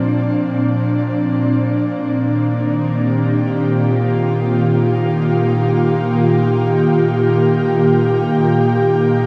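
An airy, breathy pad plays alone through this serene ambient excerpt, drifting in free time from Bb toward Ebadd9/Bb at 1.7 seconds across a range from Bb2 to G4. Its detuned, sawtooth-edged tone carries a soft noise layer and a moving notch, with slow attacks and long releases sustaining each sound, while chorus and tape echo sit on the pad up front. A wet shimmer reverb with an 8.8-second decay surrounds the sound, giving the 9.3-second fragment, cut from a longer piece, a peaceful, suspended quality.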